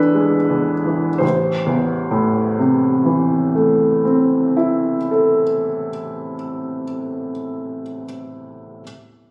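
In a rubato 2/4 at a slow 45 BPM that eases back over the first 1.2 seconds, this stormy, passionate romantic character piece for solo piano in A minor, cut from a longer work, moves from E7/A to A minor as a clear, intimate, up-front baby grand sounds from A1 to C5 with audible action noise, heard through a phone recording in a recital hall whose wet reverb is deepened by added club reverb and compression.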